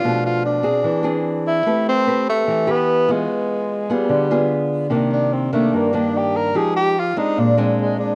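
A straight 4/4 bossa nova groove at 147 BPM carries this intimate, smooth cut from a longer piece, where an up-front, fingerpicked nylon-string guitar with fresh strings and audible finger squeak plays the chords beneath an equally close, mellow tenor saxophone melody, breathy and shaded with subtone, light vibrato and scooped notes, before the saxophone takes a jazz-style solo as the harmony settles into C minor at 4.9 seconds, the pair sitting in moderate spring reverb on a homespun cassette recording.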